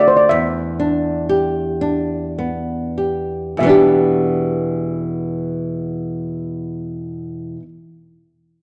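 In a rubato 6/8 at roughly 30-43 BPM that slows through the first 3.6 seconds, this haunting, longing Celtic slow air in E minor places a metallic, shimmering lead steel pan, struck with medium rubber sticks and carrying a boxy small-room tone, up front beside a warm, fingerpicked acoustic flamenco guitar with audible finger squeaks, an Em7 arriving at 0.3 seconds, the pair sitting in a moderate recital hall reverb within a dark, warm production in this short passage cut from a longer piece.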